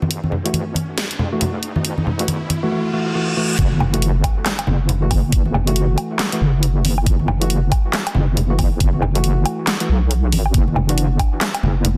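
A wobbling, heavy bass sits up front from the first moment, its detuned square and sine layers thickened by chorus, while close, ringing congas and a layered dubstep drum kit with handclaps, hi-hat, woodblock and a huge snare set a brooding, half-time swing in this deep dubstep passage cut from a longer piece. Hollow, organ-like stabs enter at 0.5 seconds, dark and percussive with a wave-folded noise layer, trailing dub echo over a minor-seventh harmony. An electronic riser builds through the opening, joined near its peak by a reverse cymbal, and at 3.6 seconds the drop lands with an impact and a knocking, layered electronic kick drum. From there the bass, kit and congas drive a dense, heavily limited groove in a light reverb, the stabs decaying between hits. Near the close the harmony shifts to an added-ninth chord over the same bass root, keeping the mood heavy to the end.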